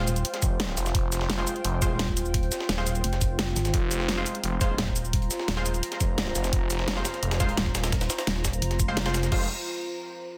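A brooding ambient pad, a bright, punchy orchestra-hit-style synth stab with reverb and delay, and a heavy, pulsing pluck wobble bass open this dark, aggressive drum and bass drop together, with two drum kits joining almost at once: an up-front dubstep kit with a huge snare, bright hats, shaker and crash, plus a gritty, compressed breakbeat kit sitting in the background. At 0.4 s a swirling, thick detuned saw bass with phaser and sidechain pumping arrives alongside a knocking, layered electronic kick. The mix is dense and heavily limited with light reverb, and this cut from a longer technical track holds on a single F minor chord before a brief new section begins at 9.3 s.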